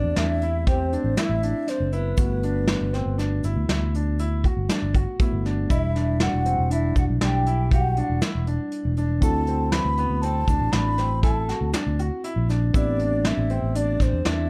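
Progressive instrumental band music in 7/4 at 119 BPM in E minor, this brooding, intricate excerpt cycles through Am7, Gmaj7, Em7 and D7 under an airy, close-miked baroque flute melody with vibrato, a crisp attack and a touch of digital delay. A clear concert grand piano plays arpeggios with deep bass, while a dark, clean fingered electric guitar and a barky, lightly overdriven tine electric piano sit in the background. A round, up-front fingered electric bass and a soft brush drum kit with a tight kick and rolled-off top anchor the dark production, joined from 1.2 seconds by a very quiet, grainy tube shaker in light reverb.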